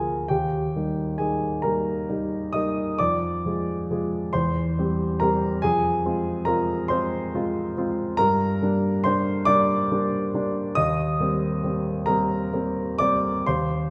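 Swaying in a lilting 6/8 with free, elastic rubato, this tender and dreamy excerpt of a romantic classical nocturne features a solo concert grand piano, warm and up front with a deep bass, ringing through the wet reverb of a scoring stage for its full 13.9 seconds.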